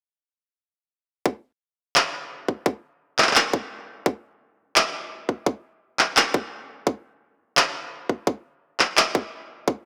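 Tape-warm electronic handclaps sit up front from 2.0 to 9.0 seconds in this dark, heavy half-time drum and bass excerpt at 171 BPM in 4/4. Alongside them, a tight, layered electronic kick drum with overdrive and a high-pass filter plays from 1.3 to 9.7 seconds, its grit pushed close to the listener. A moderate, lush hall reverb gives the sparse drum pair a roomy sense of space.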